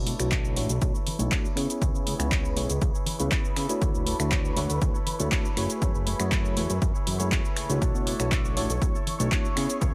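A straight groove drives this sensual, funky slice of filtered disco house: an overdriven, punchy electronic kick sits up front, an overdriven analog drum machine adds finger snaps, handclaps, hi-hat and shaker, and soft-handed tambourine and congas from a small room sit in the background. A fat, detuned, nasal bass with a saturated sawtooth-and-square edge pumps under a twangy, direct-recorded clean guitar riff and a worn, slightly out-of-tune tine electric piano through a combo amp with phaser. Dark, bowed chamber strings hold smooth sustained chords behind them, over a Bm11 to C#m7 to Bm11/D to F#m9 and back to Bm11 progression, with a filter sweep running throughout in a dry mix.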